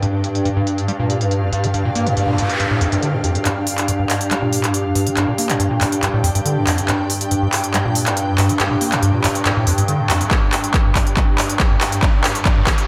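Driving peak-time techno at 140 BPM in G minor, this short cut from a longer piece feels relentless and industrial, its dreamy mix soaked in plate reverb. A squelchy, gritty acid bass riff runs from the start with analog chorus, sidechain pumping and a diffuse ambient delay, and a filter sweep moves across it from 3.5 seconds as the build-up takes hold. Beneath it a swarming, detuned drone holds G2 with granular, evolving tension, while an ethereal, airy pad of detuned sawtooth and triangle voices shimmers above with ensemble chorus and phaser. The techno drum kit sits up front with smooth, tape-warm hats and handclaps, its hats pumping and low-pass filtered, and a drum fill carries the build from 3.5 seconds onward. Noise sweeps and risers hover in the background, and at 10.3 seconds an overdriven, punchy electronic kick drum enters near the end of the excerpt.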